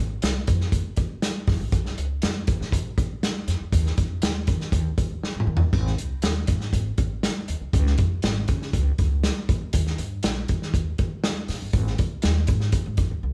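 A moderate studio reverb surrounds this live, one-room recording of an uplifting, danceable 1960s-style soul groove in a straight four, cut from a longer piece. A vintage drum kit sits up front with a punchy kick, a medium-tuned snare, dark cymbals and a rolled-off top, working through hi-hat, toms and splash cymbal, with a fill at 5.2 seconds. Beneath it, a woody, thumpy pizzicato upright bass on steel strings anchors the low end throughout.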